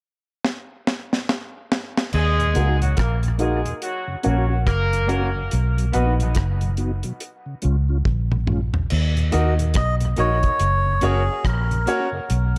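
Dub reggae with a deep, spacious mood, cut from a longer piece, opening on a dry, dark drum kit with a high-tuned snare and tight kick that rolls through a fill before a round, punchy muted bass arrives up front at 2.1 seconds. A vintage horn section in jazz style passes briefly through dub echo, while a flute-like tonewheel organ with slow rotary vibrato, a clean guitar filtered and echoed in the background, and brilliant piano stabs fill out the groove. At 9.8 seconds a reedy, breathy melodica takes the melody, its nasal tone trailing dub echo in a light reverb.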